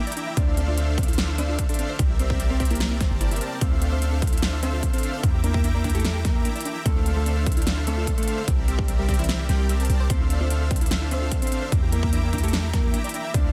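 Future bass in a half-time feel, bittersweet and emotional, cut from a longer piece: a dense, detuned supersaw riff and lush, pumping pluck arpeggios with dub echo sit over a deep, boomy 808-style bass and a punchy, up-front electronic kick, while a big-room dance kit adds a huge snare and crisp hats. A dark, clean electric guitar carries the melody through spring reverb and tape echo, pumping with the synths and bass across a Dm9, C9 and Em7b5 progression. The kick drops out from 9.3 to 10.1 seconds before returning, all under a dense, heavily limited modern master with digital ambience.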